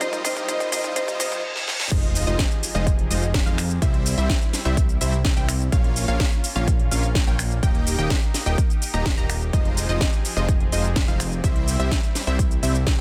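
A punchy, overdriven electronic kick sits up front through this anthemic, euphoric fragment of festival progressive house in F minor, moving at 126 BPM in a straight 4/4. Around it, a tape-warm house kit with a cracking snare, metallic hats, shaker, finger snaps and crash cymbal builds alongside a filter sweep, drum fills and a very quiet riser, reverse cymbal and sub drop. In the opening build, a bright, woody marimba with hard mallets sounds a short dub-echoed figure until 1.3 seconds, while a soft, felt-muted upright piano with audible action noise murmurs in the background until the drop at 1.9 seconds. From that point a fat, detuned analog bass enters with a sidechain pump, beneath a huge, thick, compressed supersaw riff, already running from the start, carrying cassette-tape colour and dub echo. Lush, punchy unison pluck arpeggios and a warbling, vintage chorused pad float behind, all pumping against the kick over a cycle of Fm7, C, Bbm and Eb. 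The mix is dry and tight, with little reverb.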